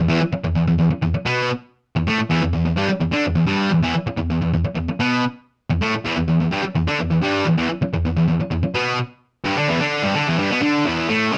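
A light reverb surrounds this short rock passage, cut from a longer piece, where a lone fuzz guitar sits up front for just over 11 seconds. The double-tracked, compressed tone is warm and distorted as the picked part ranges from its low E2 up to D4, opening on an E5 chord. The mood is cathartic yet bittersweet, carried by a straight 4/4 feel.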